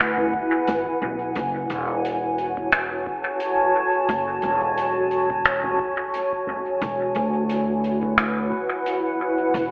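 Meditative and hazy, this ambient dub excerpt moves at 88 BPM in 4/4 with a gentle sixteenth-note swing, settled in F# minor. Up front, a granular cloud pad holds sustained chords with a slow attack and long release, its blurred, wave-folded tone drifting through its own built-in reverb as the harmony moves from E7 to F#m7 at 1.4 seconds and back to E7 at 6.8 seconds. Beneath it, a pizzicato upright bass with steel strings gives a woody, warm low end, colored by tube saturation. A soft-mallet drum kit, also up front and heard in a big room, plays finger snaps, hi-hat and toms through dub echo, while an analog electronic kick drum with a deep, tape-warm thump enters at 0.3 seconds and sits in the background. The whole mix is echo-heavy with a moderate echo chamber reverb and a telephone-like sound that deepens the dreamlike haze.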